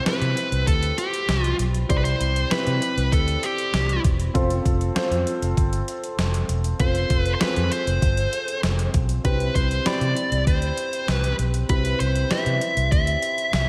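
A dark, overdriven lead guitar sings a glossy, romantic melody over mellow baby grand piano chords from the start, soon joined by a round, punchy foam-muted fingered bass and a thumpy, sampler-style 12-bit drum machine with an overdriven kick, snare and hi-hat, in this 1980s-style pop fragment that moves from Cmaj7 to F and back, its guitar lit by delay and slapback echo inside a lush hall reverb that gives a big arena sound.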